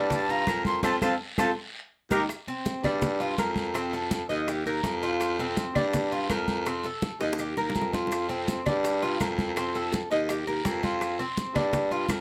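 Heard in a moderate studio room, this sunny, danceable excerpt of Cuban son and guajira at 165 BPM in F major opens with an airy, reedy concert flute melody that stops at 2.2 s, while an up-front, metallic Cuban tres picks double-string arpeggios over a gritty, punchy baritone saxophone bass line with vibrato. Bright, hard-handed congas, tight high-tuned bongos, woody claves, a background guiro and grainy maracas fill out the percussion, with drum fills at 1.6 s and 7.2 s.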